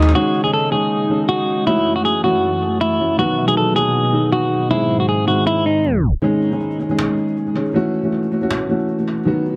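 A half-time trap groove opens on a brief woody cajon fill, as a clean, picked electric guitar melody with tape echo sits up front over a dark, boxy grand piano and a glassy, ethereal FM pad with chorus, setting a brooding hip hop mood until a tape stop at 5.8 s cuts the guitar and pad, leaving the piano and the hard-handed, vintage cajon for a break from 6.2 s.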